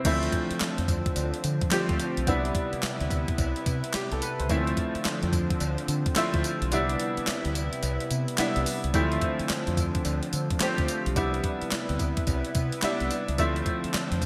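This new jack swing R&B excerpt has a confident, bouncy feel, with swung sixteenths and a bright 1980s-style digital production set in a moderate hall reverb. A crisp 8-bit drum machine sits up front with a thumpy kick, fat snare, handclaps, hi-hat, tambourine and crash cymbal, treated with gated reverb, and the kick drops out between 6.7 and 8.9 seconds. A deep, round fingered electric bass adds dark, punchy weight underneath, while a distant, metallic cowbell sounds very quietly in the background. A warm baby grand piano with short sustain plays accompaniment near the front through analog chorus, and a thick, warbling unison pad of detuned sawtooth and square waves holds slow-attack chords beneath it. The harmony alternates between Dm7 and Cmaj7 throughout.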